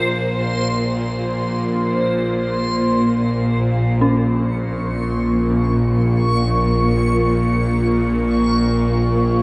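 A bowed-like drone in Bb minor opens this dark ambient excerpt in free time, sitting up front from Bb1 to Bb2 with a tense, string-like sawtooth edge, a noisy grain and a bright sheen under phaser and its own reverb. Alongside it from the very start, a backwards swelling texture runs from C5 to Db6, its reversed, granular, detuned triangle tone giving a dreamy haze against the drone's bite. The harmony rests on Bbsus2 before settling onto Bbm at 4.0 seconds, where a dark detuned synth bell enters in the background with eerie, inharmonic FM arpeggios around Db4, blurred by chorus and dub echo. Set in a wet echo chamber with a long 2.2-second decay, the sound is ominous and desolate, and the piece continues to 9.4 seconds as a fragment cut from something longer.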